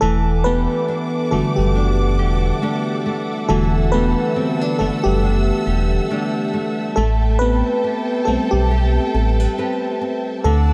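A dark, warm mix sits in a small room with light reverb. This moody, longing slice of contemporary R&B moves with a relaxed swing on the sixteenths. The FM electric piano is up front and takes a solo across the whole clip, its glassy, bell-like attack decaying into a mellow, warbling vintage tone coloured by chorus and a faint noise layer. A fingerpicked nylon-string guitar plays classical-style arpeggios in the same middle register, trailed by digital delay. Behind them, a distant bowed string section holds sustained chords high above, expressive with vibrato and portamento. Underneath, a deep, full sine sub bass doubled at the octave sits up front, while the harmony moves from Em11 to Am9 at 7.0 seconds.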